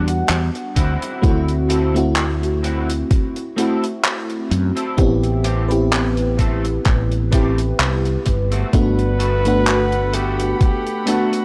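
A slow 64 BPM pulse in 4/4 with a light swing on the 16ths sets a nostalgic, hazy vaporwave mood in A dorian, cut from a longer piece. A damped, dry 70s drum kit plays handclaps and hi-hat, and from 0.8 s a thumpy, overdriven sampler-style electronic kick sits heavier in the mix. A round, dark fretless bass stays up front with tube saturation, under a lush, dreamy FM electric piano with a soft pad layer, detuned and decaying, carrying subtle chorus, 12-bit grit and tape echo. A slightly broken-up, twangy picked electric guitar plays a quiet riff through ensemble chorus, sampler grit and tape echo as the chords move from Em9 through D9 and Am7. At 8.7 s a clear, close-miked flugelhorn enters with vibrato and scooped notes over Gmaj9, echoed on tape, while a reedy, distant string section holds bowed chords in the background. The small-room, cassette-tape recording gives the whole piece a dry, gritty hardware character.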